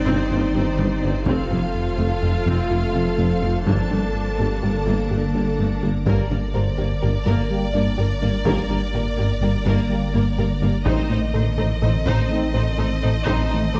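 A straight 5/4 pulse drives this relentless, brooding excerpt of hybrid orchestral and electronic film score, with a punchy sub bass with a pitch-drop attack, a smooth ring-modulated synth bass riff, very quiet bowed cellos, distant double basses and a mellow tuba holding the low end until 5.9 seconds, while a very quiet, vintage taiko ensemble on heavy sticks enters at 1.3 seconds. Above them, lush bowed violins carry a second line and violas with portamento accompany, over sustained chords from background French horns and a pure, detuned organ-like pad with ensemble chorus, while a soft round synth pluck arpeggiates and a felt-muted upright piano adds intimate texture. At 6.1 seconds a focused violin section with vibrato takes up the melody, all set in a moderate scoring stage reverb with a dark, rolled-off top.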